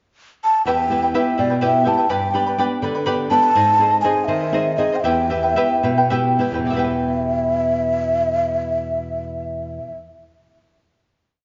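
Andean folk in E minor and 6/8, festive yet melancholic at 67-84 BPM, where a breathy, hollow wooden quena with vibrato and a crisp chiff carries hook-like motifs from 0.4 seconds, over a bright charango strumming shimmering double strings in open chord shapes and a fingerpicked flamenco guitar playing oompah bass notes and chord figures, the tempo slowing from 3.6 seconds into a final chord at 6.7 seconds, set in a dark, reverberant recital hall.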